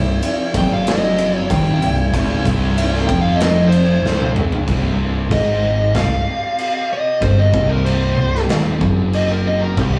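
Heavy and sludgy, this stoner and doom metal passage, cut from a longer piece, grinds along in a straight 4/4 over a C minor chord. Two thick fuzz guitars sit in the background churning out a low, dark riff, joined beneath by a growling picked electric bass whose overdriven, direct-and-amped tone adds warmth to the bottom end. A big acoustic rock kit sits up front with a punchy kick, medium-tuned snare, bright cymbals, ride and toms, and it plays a fill from 4.0 to 4.7 seconds that leads into the second half. From there a compressed fuzz lead guitar, present up front from 0.6 seconds, takes a solo through to the end. Far beneath it all, a very quiet swarming drone holds tense, detuned, granular chords that slowly evolve, while the rough rehearsal-room recording adds saturation and a small room's reverb.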